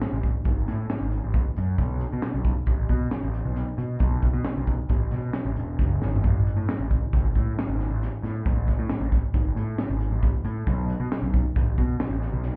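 The recording sounds muffled, as if heard through a wall, with a touch of club reverb over a fairly dry mix. It is a bright, intricate slice of math rock and midwest emo in 5/4 with a straight feel, cut from a longer piece. A crisp fusion drum kit sits up front with hi-hat, punchy kick, high-tuned snare and toms, heard in a small, pumping room. From 0.1 seconds a picked electric bass joins, overdriven into a fuzzy, bright tone that ranges from E1 to B2 and stays close and forward. Around 6.0 seconds the drums break into a fill before the pair carry on through the single section to the end.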